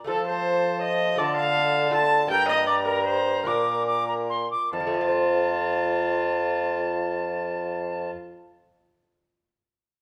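A rich, gut-string viola sits up front with its bowed second line over a warm, lightly vibrato bassoon bass, while a mellow, pure alto recorder carries the melody and a bright, delicate fingerpicked lute accompanies in the background, in a festive yet stately renaissance-style consort dance in 3/4 and F major at 137-162 BPM that slows down from 1.8 to 4.7 seconds as the harmony moves through F, Dm, Gm and Bb back to F, heard in moderate recital hall reverb and cut from a longer piece.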